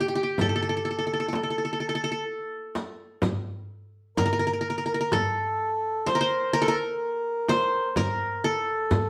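A bright, fingerpicked qanun with triple strings leads up front in this longing, hypnotic Arabic maqam ensemble piece in 10/8, carried by a reedy, round accordion second line, while a crisp metal-shell darbuka, a small, close and dry frame drum struck with hard hands, and a vintage, band-limited riq sitting in the background join at 0.4 s, the band playing live together in one room with wet studio reverb in this cut from a longer performance.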